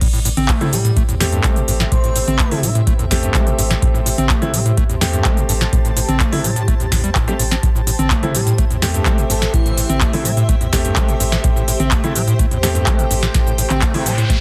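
A squelchy, gritty acid bass riff with distortion and delay drives this hypnotic, raw acid house drop, pumping over a deep saturated sub bass, a deep electronic kick and an up-front, tape-warm analog drum machine with a tonal snare, metallic hats, claps, shaker, toms and crash, while piano stabs, a cloudy granular pad and a soft, airy lead heard at 0.7 and 8.3 seconds fill in behind until a noise sweep arrives at 13.9 seconds.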